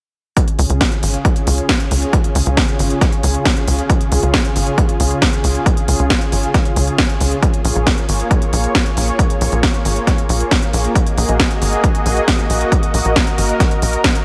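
A lush, detuned supersaw pad with sidechain pumping and a filter sweep opens this euphoric, soaring uplifting trance excerpt in Db major at 136 BPM alongside a punchy electronic kick and an up-front techno kit of cracking snare and smooth hats, joined at 0.6 seconds by a tight, nasal sequencer bass, the chords moving from Db to Bbm7 at 7.4 seconds and Gb6 at 11.0 seconds in light reverb.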